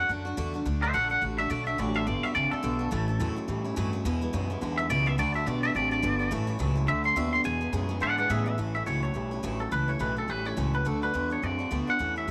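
A swung 4/4 pulse at 212 BPM drives this rollicking, upbeat rockabilly excerpt in A major, cut from a longer piece and running about 12 seconds. A clean, twangy electric guitar carries the melody up front, its compressed tone trailed by tape echo, and it takes a solo over the opening 8.6 seconds. Beneath it, a picked steel-string acoustic guitar adds a bright, full-bodied accompaniment, while a pizzicato upright bass with gut strings gives a woody, thumpy bottom end. From 1.8 seconds a second electric guitar, slightly broken-up and lo-fi through a small old amp, plays a riff soaked in lush chorus. The chords move from D through A and E in the opening passage before a new section arrives at 8.6 seconds, all set in a studio ambience.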